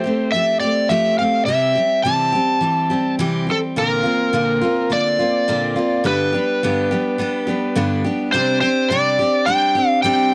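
This rock fragment opens with an overdriven slide guitar carrying the melody over a picked steel-string acoustic guitar, both sounding from the very first moment. The mood is nostalgic and hopeful, moving at 105 BPM in a straight 4/4. The electric slide part, played with fingerpicks, has a warm overdrive and sits up front in the upper register. Beneath it, the dreadnought acoustic offers bright, full-bodied accompaniment, with audible finger squeak adding a human touch. The harmony passes through Fadd9, C, Bbadd9 and G before shifting to a new section on Csus2 at 8.3 seconds, and the clip ends at 10.3 seconds. The sound is dry and close, with the intimate character of a 1970s studio recording.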